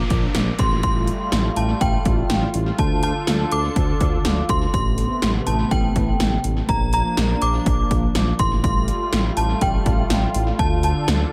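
An echo-heavy mix with light reverb and a digital ambience opens this cool, nocturnal synth-pop excerpt, which moves at 123 BPM in a straight 4/4 and is tuned to A4 = 439 Hz. Up front, 80s-style electronic pad drums enter at 0.1 seconds with a punchy kick, a gated snare and metallic hi-hats, all overdriven and touched with tape echo. Beneath them, a smooth sawtooth-and-triangle synth bass with ring modulation, vibrato and a fast attack holds sustained, mellow low notes. A lush, detuned unison pad with an airy noise layer and a slow attack carries sustained chords through chorus and phaser, cycling through Bb, Fadd9/A, Dm and Amadd9. High above, an inharmonic FM synth chime rings out the melody with a long, decaying release, colored by ensemble chorus, tremolo and tape echo, while a background downlifter sweeps through the first 2.8 seconds.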